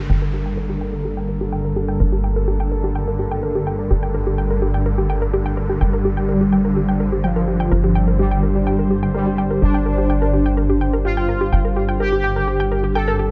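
A straight 4/4 techno pulse at 126 BPM rests on a tight, punchy sequencer bass holding G1 under a single G minor chord, while a deep, moody pad, a swarming, tense drone and a warbly, lo-fi pluck playing filter-swept arpeggios with 12-bit grit and tape echo fill out this dark, cinematic excerpt. A faint electronic downlifter falls away by 2.0 s, and at 5.8 s a juicy, resonant polysynth melody enters up front with chorus, tremolo and tape echo. The parts sit in a digital ambience.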